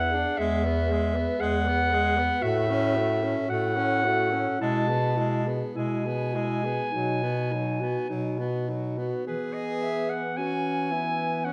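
Classical and lyrical, this short excerpt from a longer piece features a single-reed quartet in E major, moving at a slow, rubato 50-59 BPM with a tender, warm mood. A bright, vintage-toned clarinet with a soft attack carries the melody up front, while a mellow alto saxophone with vibrato sings a second line, a tenor saxophone fills in the accompaniment, and a bass clarinet anchors the bass, also up front. The chords pass from E through F#m/A, E/B and B before settling back on E at 9.3 seconds as a new section begins, all bathed in the lush reverb of a recital hall or church.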